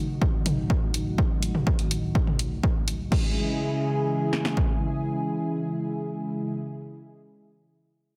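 A steady, straight 4/4 pulse at 124 BPM drives this short, dark and melancholic melodic techno excerpt in C# minor, cut from a longer piece. A punchy analog drum machine sits up front with kick and snare from 0.2 to 4.7 seconds, while a second, quieter drum machine part adds crash cymbal, hi-hat and toms from 0.5 until 3.2 seconds, both re-recorded in a large room. Also up front, a lush, thick unison pad built from detuned sawtooth and square waves holds sustained chords from C#2 to G#4, its slow attack and chorus giving it a warbling, vintage character, and sidechain pumping making it breathe with the beat. The harmony moves from D#dim over C# in the opening section to C#m when the second section arrives at 3.1 seconds. Light reverb surrounds the mix, and heavy multiband compression lends it a squeezed, radio-like sound.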